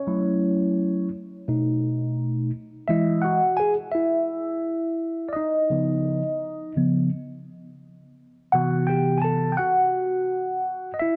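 A moderate plate reverb with a 2.8-second tail surrounds a mellow, clean tine electric piano that sits up front, colored by a phaser, playing alone for the full 11.2 seconds of this passage cut from a longer piece. The relaxed, smooth hip hop feel moves at 85 BPM in 4/4 with a 64% swing on sixteenths, while the piano spans B2 to A5 through a progression of F#m7, B7, Emaj7, C#9 and Cmaj7, arriving on that final chord at 8.5 seconds.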